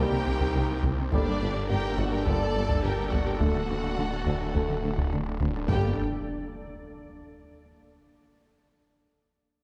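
A moderate scoring-stage reverb gives this brief, tense cut from a longer hybrid orchestral and electronic film cue a roomy depth, while a snarling, distorted sawtooth bass growls bright and compressed beneath the low end. At 105 BPM in 4/4 and G harmonic minor, a distant, lush symphonic violin section carries an expressive melody over a smooth chamber violin second line and a focused viola section. The brooding harmony moves from Cm7 to Gmadd9 and D, held in sustained chords by an evolving, morphing wavetable pad with ensemble chorus, a very quiet French horn section with a soft attack, and a background trombone section. Cellos, double basses and a very quiet tuba anchor the bass alongside the synth. Heavy-stick taiko drums, close and dry, enter at 0.4 s, and a huge impact strikes at 5.7 s as the harmony returns to Gmadd9.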